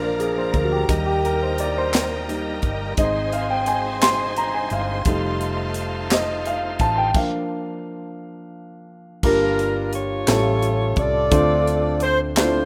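In a straight 6/8 at 58 BPM, this uplifting, jubilant slow gospel excerpt sets a warm, up-front grand piano solo over a round, punchy hollow-body electric bass, crisp fusion drums with bright cymbals and a high-tuned snare, close, dry handclaps in the background from 1.9 seconds, a shouting, lightly overdriven tonewheel organ on a slow rotary speaker and lush bowed strings, until the organ and strings fall away at 7.1 seconds for a stop and a soft-attack, vibrato-rich saxophone section takes the melody from 9.2 seconds in a rough home-demo mix with light small-room reverb.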